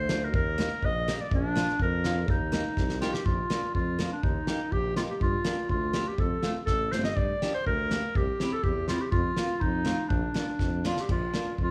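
A clear, up-front clarinet carries the melody over a warm tuba bass from the very start of this bouncy, festive alpine folk dance in a straight two-beat metre. A bright picked steel-string acoustic guitar fills in the accompaniment, while a loose, up-front drum kit with dark cymbals, a fat snare and a boomy kick adds punch in a pumping studio room, throwing in fills at 2.8, 6.7 and 10.6 seconds. Light reverb gives the brief cut from a longer piece a gentle sense of space as the tune moves from its opening phrase into a longer second section at 3.3 seconds.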